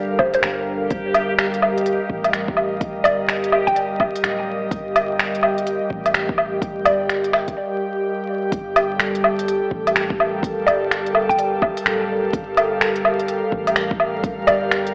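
An airy, breathy pad opens this nocturnal, ghostly future garage excerpt, holding sustained chords over a soft, round 808-style bass with tube saturation. Behind them, a reversed, swelling texture drifts in the background with its own reverb until 7.6 s. The track moves at 126 BPM in 4/4 with a swung sixteenth feel in G minor, and the pad, treated with chorus and sidechain pumping, shifts from Gm7 to Ebadd9. A woody, mallet-like synth pluck carries the melody through chorus, phaser and analog delay, stopping before a short break and returning at 10.7 s. The rhythm comes from an up-front organic electronic kit of finger snaps, crisp hi-hats and woodblock, layered with a deep, tape-tinged electronic kick. A lush hall reverb, digital ambience, vinyl crackle and an AM radio tone colour the whole recording, and the Gm7 chord comes back at 8.5 s as the second section begins.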